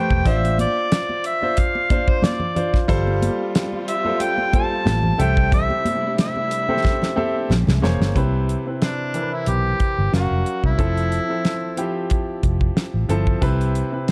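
A relaxed 4/4 groove with a light swing on the sixteenths drives this short, lush and romantic slice of 1970s-style soul, carried by a dry, up-front drum kit with a fat snare and tight kick that rolls into a fill from 6.8 to 8.2 seconds. Underneath, a foam-muted fingered electric bass sits round and punchy, while bright, high-tuned congas add close detail in the background until about 8.0 seconds. A clear, natural grand piano supplies the accompaniment throughout, moving through rich chords such as Dm7/A, G9sus4 and Bbm9 before the second section shifts among Cmaj7, F#maj7 and Fmaj7. Up front, a mellow harmonica takes the solo melody in a vintage pop style with scooped notes, and a bowed studio string section glides in behind it from 2.9 to 8.1 seconds with vibrato, portamento and a smooth top. Light small-room reverb and a dark production give the whole cut an intimate, velvety glow.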